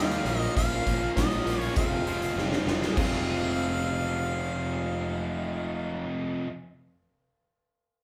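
The rhythm moves in a straight 4/4 at 100 BPM, a brooding, gritty classic rock passage in F minor cut from a longer piece, with chords shifting from Bbm at 0.3 seconds to Fm at 1.8 seconds. A big acoustic rock drum kit sits up front with crash cymbal, hi-hat, a tight kick and a medium-tuned snare in a bright stone room, playing a fill from 2.4 seconds and stopping at 3.1 seconds. Three picked electric guitars stack riffs in the low and middle register: a tight, bright distorted one, an overdriven semi-hollow guitar in the background, and a biting, double-tracked overdriven guitar also set back. Underneath, a punchy fingered electric bass growls with fuzz and overdrive, while a reedy, clean electric piano offers very quiet accompaniment through its built-in speakers. Over the top, a clear solo harmonica carries the melody with light vibrato and a smooth top, and the whole band sounds as if playing live together in one large studio room with moderate reverb.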